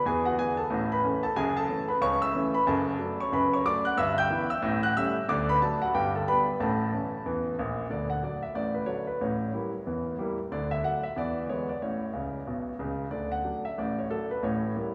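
Bathed in a long, wet church reverb with a hint of small-room ambience, this swinging, exuberant stride piano jazz passage in D major moves at 184 BPM in 4/4, its clear, up-front grand piano playing solo across a broad range from deep bass to high treble over chords that keep returning to D, with a brief fill at 12.2 seconds before the piece is cut off at 14.9 seconds.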